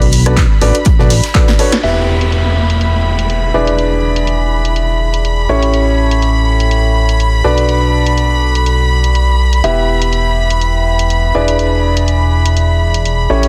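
A boxy, intimate grand piano riff with tape echo and sidechain pumping leads this bittersweet, soulful piano house excerpt, over a fat, detuned sawtooth analog bass, sul tasto chamber violin chords with light vibrato, a punchy analog drum machine with filtered hats and snare, a dry electronic kick that drops out as the fill begins at 1.5 seconds, a very quiet damped 70s kit that stops at 1.7 seconds, and a downlifter sweeping in at 1.8 seconds, all in a small room under a dense, heavily limited master.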